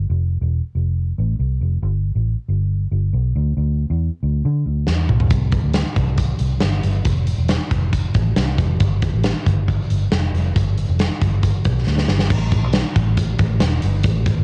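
A dry, intimate home recording on cassette, with very little reverb, gives this short cut from a longer piece of jangly indie pop a nostalgic, youthful glow. It opens with a vintage muted fingered electric bass alone, its dark, round, foam-muted tone amped and placed up front as it holds down the low end in a straight 4/4 feel. At 4.9 seconds a big rock drum kit enters with a fill, sounding acoustic and roomy, with a tight kick, a medium-tuned snare, hi-hat, toms and crash cymbal. The kit is warm and mid-forward with a rolled-off top, sitting up front beside the bass. Another drum fill at 11.9 seconds leads into a new section at 12.3 seconds, where the two parts carry on together until the cut ends.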